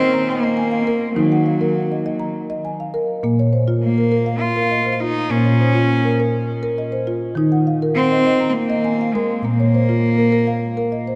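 This world meditative piece for tuned percussion moves at 203 BPM in eighths, in a straight 7/8 in Bb minor, with a hypnotic, meditative mood. A marimba with medium mallets plays arpeggios from Bb2 to Bb5 for the whole 11.2 seconds. Its padauk bars give it a woody, full sound, close-miked, dry and up front. A single bowed cello carries the melody between Gb3 and F4 throughout, also up front. The cello has a rich, reedy gut-string tone in period style, touched with delay. The harmony alternates between Ebm and Bbm, and the whole passage sits in a vast, echoing space with a wet cathedral reverb, cut from a longer piece.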